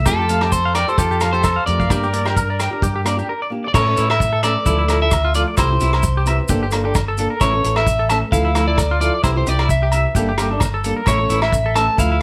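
Warm and bittersweet, this highlife guitar band clip moves at 131 BPM in 4/4 with a light sixteenth-note swing, cut from a longer piece and played live together in one large studio room with moderate reverb. A bright, twangy electric guitar at the edge of break-up carries the melody, while a second slightly broken-up electric guitar, warmer in tone and treated with tremolo, spins arpeggios alongside it. A small fingerpicked nylon-string guitar fills in accompaniment, and a dark, round fingered electric bass sits up front. A clear trumpet with vibrato adds a smooth second line only in the opening stretch, dropping out at 3.5 seconds during a short break that leads into the second section at 3.7 seconds. A dry, mid-forward soul drum kit with a punchy kick, rim clicks, hi-hat and dark crashes drives the groove, with ringing agogo bells in the background and grainy, saturated maracas, as the harmony moves from F and G minor into a repeating cycle of D minor, C, G minor and A.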